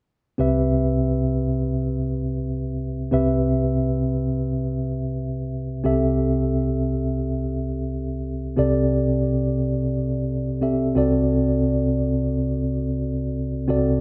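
Floating in free time, this nostalgic, glossy pop fragment in C major, cut from a longer piece, features a lone mellow tine electric piano, clean and up front through built-in speakers, spanning C2 to E5 as it moves from Cmaj7 to Am7/C at 5.8 seconds and D7/C at 11.0 seconds within a lush hall reverb.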